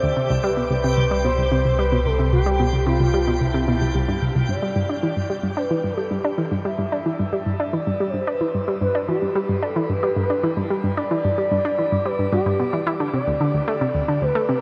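Steeped in a long, wet shimmer reverb, this cosmic, mysterious stretch of sequencer-driven ambient space music puts a bright, nasal analog pluck riff with chorus and analog delay up front beneath a smooth, dark, vibrato-tinged synth lead melody carrying subtle chorus and delay, while a deep sine sub bass and a sparkling granular texture with its own reverb both drop away at 4.5 s.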